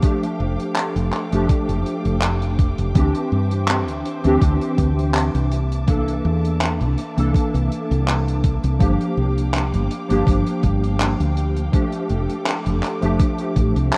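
Vaporwave with a woozy, hazy swing, cut from a longer piece, where warbling lo-fi synth keys with chorus and analog delay carry nostalgic chords up front over a rich, bowed string section holding soft sustained harmony, a thumpy overdriven electronic kick, a dark, rolled-off soul drum kit with handclaps and hi-hat, and a round, punchy fretless bass entering at 0.4 seconds, all wrapped in light reverb and the rough grain of a cassette home demo.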